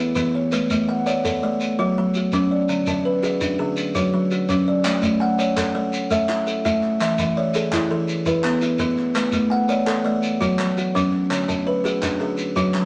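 Heard in a moderate studio reverb, this rippling, warm excerpt of southern African traditional music moves in an mbira-style interlocking cycle at 111 BPM in 12/8, centred on A major. Two up-front kalimbas, one woody and ringing and the other bright and buzzing, spin arpeggios together from the start, while a grainy, band-limited shekere sits softly beneath them from 0.2 seconds. Crisp group handclaps with a live-room feel join at 4.9 seconds as the cycle passes through chords of A, D and E.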